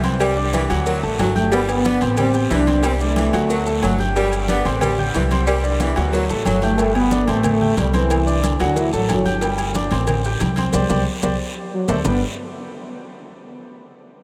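Sunny and joyful, this salsa clip moves at a brisk 182 BPM in G major, with a woody, thumpy upright bass up front, a brilliant grand piano and a bed of congas, agogo bells, timbales, cowbell, bongos, a raspy guiro and grainy maracas. A punchy trombone section carries the melody in short phrases, while an edgy saxophone section with vibrato and tape echo plays a second line until 6.6 seconds. Drum fills arrive near 6 and 11 seconds, the latter with a band accent, and a huge ambient reverb soaks the mix in a dreamy haze.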